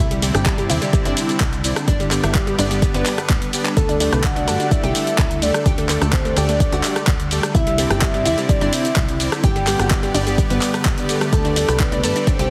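Euphoric and expansive, this progressive house excerpt moves at a straight 4/4 pulse, cycling through Cadd9, G and Dsus4. An evolving wavetable pad morphs in the background with ensemble chorus and its own reverb, while a detuned analog pluck spins arpeggios through chorus and digital delay, its filter sweeping over a noise layer. A tight, punchy sequencer bass drives underneath, and a soft, smooth supersaw adds sustained stabs with delay, all of these synths breathing with sidechain pumping. The deep house kit of handclaps, hi-hat, ride, rim click and shaker sits tape-softened as if re-recorded in a small room, with a deep electronic kick up front entering at 0.5 seconds. After a drum fill at 3.3 seconds, a full-bodied, octave-layered lead enters at 3.8 seconds, dark and round with vibrato, phaser, chorus, cassette tape colour and delay. The whole mix carries a heavily compressed, radio-style sheen under light reverb.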